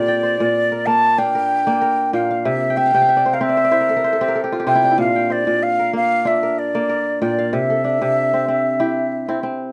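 A lightly swung sixteenth-note feel in 4/4 drives this hypnotic excerpt of West African string and xylophone music, as a fingerpicked kora spins ringing, crisp arpeggios over a gentle alternation of Bb and C chords, with a fill from 2.7 to 5.0 seconds. Up front alongside it, a mellow silver concert flute carries the melody in an airy, straight tone with a chiffy attack, its slightly unsteady line sounding oddly distant. Light reverb gives the warm acoustic pairing a soft sense of space.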